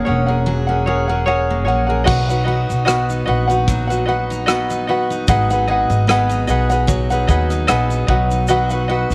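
Easy-going and sunny, this short acoustic pop excerpt in B major moves at 75 BPM in 4/4 with a light sixteenth-note swing. A fingerpicked tenor ukulele sits up front over full-bodied picked arpeggios from a jumbo steel-string guitar and a woody, thumpy pizzicato upright bass, all opening together on an F#add9 before settling onto B and G#m7. At 2.1 seconds a natural country drum kit joins with a punchy kick, rim click, shaker and crash cymbal, and the whole blend is bathed in a moderate echo-chamber reverb.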